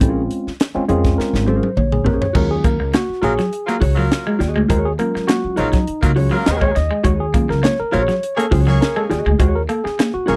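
This dry, close recording has a 1970s studio sound with little reverb, and it catches a sly, funky groove in Eb dorian at 102 BPM in a straight 4/4, cut from a longer piece. It opens on a break over Bbm7: the worn, slightly out-of-tune tine electric piano plays a fill, and the crisp fusion drum kit, with its high-tuned snare and punchy kick, adds a fill of its own. Beneath them, a woody, thumpy pizzicato upright bass sits up front, and a dark, compressed, clean electric guitar fingers its accompaniment. At 2.4 seconds the harmony moves to Ebm11 and the electric piano takes a solo, with a twangy, slightly broken-up electric guitar riff entering just before, at 2.3 seconds, colored by tube saturation and lush chorus. A horn section with a smooth top and octave doubling joins at 3.2 seconds with a punchy, pop-style second line that fills out the funk.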